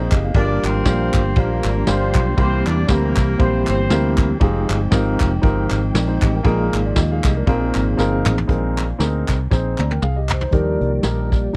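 Riding a lightly swung 118 BPM groove from a brushed vintage drum kit with a punchy kick and a round, foam-muted fingered electric bass, this hopeful, jubilant uptempo gospel excerpt pairs an intimate grand piano, its action noise audible, with soft, flute-like tonewheel organ chords through a fast rotary speaker, adds crisp group handclaps, lets a dark, distant horn section carry the melody only from 0.4 to 4.4 seconds, moves from Gm7 through Fm9 and suspended Bb chords with drum fills, and ends on Ebmaj7 as the organ takes a brief solo at 10.5 seconds, all in a dry, close 1970s-style studio sound.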